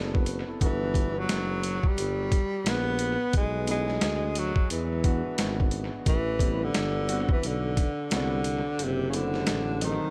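A swung boom bap groove at 88 BPM anchors this smoky, cool jazz-hop excerpt, its sampler-style kit up front with a thumpy kick, a high-tuned snare and hi-hat, all sounding compressed, pitched down and gritty, with analog delay and the character of a re-recording in a large room. Beneath it, a breathy tuba carries the bass line with mellow vibrato and scooped notes in a jazz style. A dark grand piano sits in the background, vintage and smooth with long sustain and its own analog delay, voicing extended chords that move from D13 through Gmaj9, Bm11, E7 and Am9 before landing on F#m7b5. From 0.6 seconds a whispered tenor saxophone takes the melody up front, intimate and soft in attack, with vibrato, scooped notes and a smooth top, touched by analog delay as well. The kick drops out at 8.8 seconds, and the whole mix carries light reverb, small room ambience and an echo-heavy sheen.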